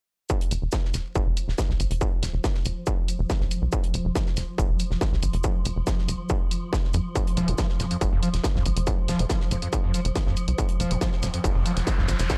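Driving peak-time techno at 140 BPM in F minor, hypnotic and intense, in which a distorted, up-front electronic kick and warm electronic hi-hats pair with a dry, damped 70s drum kit of hi-hat, shaker and fat snare, while a tight, nasal sawtooth sequencer bass pumps beneath a swarming, detuned, granular drone in F3 with built-in reverb; a squelchy, resonant overdriven acid bass with subtle chorus and analog delay joins at 7.2 seconds, and an electronic riser enters at 11.1 seconds, all captured as a gritty hardware recording in a small room.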